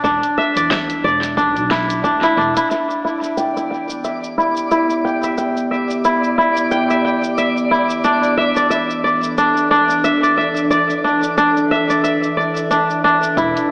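Organic downtempo in E minor at 90 BPM, this excerpt has an earthy, hypnotic mood, with a swung 4/4 lilt on the sixteenths. An up-front, fingerpicked kora carries arpeggios throughout, its ringing, crisp tone dulled by a low-pass filter that sweeps across the passage and trailed by tape echo. A woody, growly pizzicato upright bass with sidechain pumping and a punchy electronic kick sit beneath the opening seconds, the kick dropping out after about 2.2 seconds and the bass after about 2.5, both returning briefly at 13.4 seconds, while a layered deep house kit of hi-hat, shaker and fat snare keeps going with its own tape echo. From 3.3 seconds a twinkling granular texture adds a sparkling, octave-up shimmer in the background, and from 3.6 seconds a warbling, nostalgic, lo-fi pad holds dark, detuned sustained chords with chorus, pumping and a filter sweep, moving from Em to Asus4/E. The whole mix sits in a wet echo chamber with an AM radio character.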